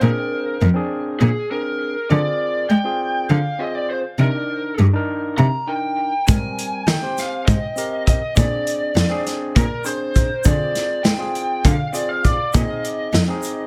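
An overdriven, lo-fi lead guitar through a small cranked amp with tape echo carries the melody up front in this tense, driving progressive instrumental fragment in 7/8 at 201 BPM (eighths), over a barky, gritty tine electric piano, an intimate bowed cello playing the bass line with light vibrato and an airy sul tasto tone, and a punchy, roomy soul drum kit and a grainy egg shaker that enter at 6.3 s, all set in light reverb as the chords move from Bb7 through Dm7b5, Cm9 and Abmaj7 to a closing Bb7sus4.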